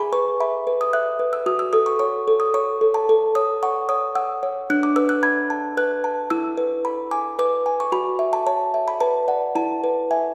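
Classical lullaby for solo music box in a steady triple metre, tender and dreamy in mood, heard as a short cut from a longer piece. The large box sounds delicate and tinkling, its plucked tones mellow and soft yet placed up front, ranging from the middle register up into high, chiming notes. A wet concert hall reverb with a long tail surrounds it, and a faint mains hum sits underneath as the gentle harmony drifts toward a closing turn at 9.5 seconds.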